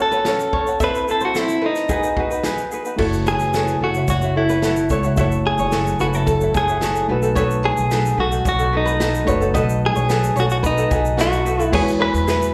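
A clean, compressed electric guitar carries the melody up front from the first moment, its picked line coloured by spring reverb and slapback echo, while a light, fingerpicked ukulele accompanies it. At 0.1 seconds a fingerpicked flamenco guitar adds arpeggios in the background, and a natural country drum kit joins with a punchy kick, medium-tuned snare, shaker and bright crash cymbal. At 3.0 seconds a woody pizzicato upright bass steps forward with steel-string bite, and a reedy, barky electric piano, lightly overdriven through its built-in speakers, fills in behind. The mood is heartfelt and easy-going, an acoustic pop groove in a straight four with a warm, unhurried glow. The sound is that of a live gig heard through the venue's PA, with club reverb and a small-room ambience, and the passage is cut from a longer piece.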